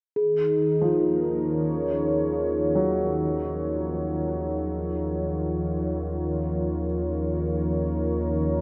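A vast, wet cathedral reverb with a 6.7-second decay hangs over this short, desolate fragment of dark ambient drone in Eb minor, tuned to A4 = 445 Hz and drifting in free time. At 0.2 seconds a moody analog pad sits up front with detuned sawtooth chords, a sub octave and a shimmering chorus, while a quartz singing bowl rings a pure, airy Ab4 struck with a felt mallet, its slow beating lending a meditative stillness. From 0.8 seconds a deep, ominous drone fades in beneath, rumbling and nasal across Eb2 to Eb3 inside its own built-in reverb. A grand piano enters at the same moment, playing present arpeggios between F3 and Gb3 with long sustain, blurred by a diffuse ambient delay. The unsettling layers hold together until the clip ends at 8.6 seconds, cut from a longer piece.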